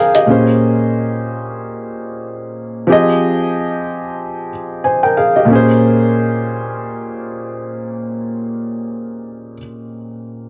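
Dark and moody, this short hip hop fragment is cut from a longer piece and rests entirely on a concert grand piano playing accompaniment from 0.0 to 10.5 seconds. The piano sounds mellow and intimate, with deep bass at the bottom of its range and audible action noise from the instrument itself. A cassette-tape character gives it a vintage feel, while high-pass and low-pass filtering narrow its tone. Minor-ninth chords carry the harmony, with a new section arriving at 5.5 seconds as the opening chord returns. The room is dry, with little reverb, and the piano sits up front in the mix.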